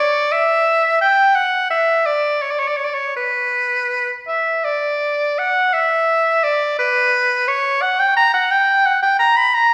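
Grave and solemn, this short classical passage is a baroque-style fantasia in B minor for unaccompanied oboe, cut from a longer piece. It moves in a slow, rubato 6/8, with the dotted-quarter pulse hovering between 53 and 59 BPM. The bright oboe plays alone throughout, sitting up front in the sound and singing with a light vibrato in a classical style across a range from B4 to B5. Its opening phrase runs to about 5.4 seconds, and a second phrase built on the same material carries through to the close at 9.7 seconds. A wet recital hall reverb surrounds the instrument, and the listener seems placed further back in the room, so the hall's ring lingers after each note.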